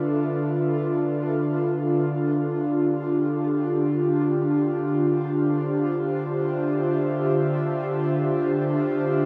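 A breathy, full-bodied synth pad plays alone from the start, its detuned sawtooth and triangle tones blended with a noise layer and a touch of ring modulation, softened by chorus and slow, lingering envelopes. It holds a rootless G13/D before settling onto Dm11 at 1.7 seconds, sitting up front in a dark, mellow mix. A huge, wet reverb gives this brief ambient fragment a spacious, melancholic air.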